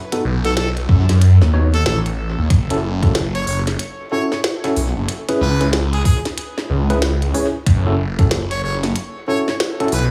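A swung 93 BPM glitch hop groove in 4/4 and F# dorian struts with playful swagger through B7, F#m7 and C#m as a thumpy, pitched-down kick sits up front beside tiny overdriven snare and clicky hats, a swirling, thick detuned saw bass with phaser and tube saturation anchors the low end, worn, slightly out-of-tune tine electric piano stabs carry 12-bit sampler grit, sidechain pumping and dub echo, and a clear harmonica melody with light vibrato floats in from 0.4 seconds, all within an echo-heavy mix with light digital ambience.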